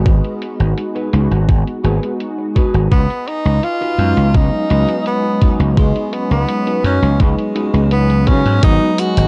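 A breathy tenor saxophone carries the melody in this nostalgic, woozy vaporwave excerpt, entering at 2.9 seconds with scooped notes, vibrato and a soft attack in a jazz style, trailed by tape echo. The tempo is 84 BPM in a straight 4/4, with the harmony moving from G#m7 to C#9sus4 and back to G#m7. A punchy, overdriven slap bass and a thumpy, sampler-style electronic kick sit up front, while an overdriven electronic hi-hat, darkened by a low-pass filter, adds small-room ambience to the beat. Mellow synth brass, round and full-bodied with detuned sawtooth tones and ensemble chorus, fills in the accompaniment. Behind it, a warbling, lo-fi pad holds slow-attack chords with 12-bit sampler grit, and a fingered electric guitar riff drifts through lush chorus and tape echo, with a clean guitar fill arriving at 7.6 seconds. The dark, cassette-tape production wraps the mix in light reverb for a hazy, retro feel.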